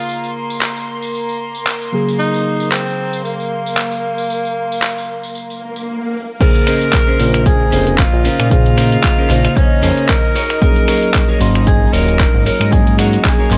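Lightly reverberant and cosmic, this groovy nu-disco excerpt in Bb minor at 114 BPM, with a swung 4/4 feel, opens on a breathy, intimate tenor saxophone melody with tape echo over a reedy electric piano and a distant, sul tasto violin section that both pump with sidechain, while a tambourine and a gritty sampler-style kit of hi-hat, handclaps, finger snaps and crash cymbal keep time, and an electronic swell at 5.5 s leads into a drop at 6.4 s, where a punchy, up-front kick arrives, a dark, clean guitar riff with lush chorus sits in the background, and a fat sawtooth analog bass joins at 7.2 s.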